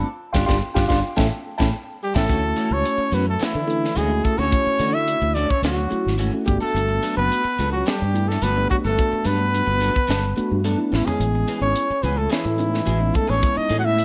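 Slick and bright, this 108 BPM electric jazz fusion excerpt in D lydian opens with a band accent over mellow phased electric piano, slightly broken-up guitar stabs in the background, round fretless bass with ensemble chorus and a tight funk kit with a high-tuned snare, and after a drum fill at 1.7 seconds a vibrato-rich trumpet takes the melody at 2.0 seconds with a punchy trombone second line behind it, in a light small-room ambience.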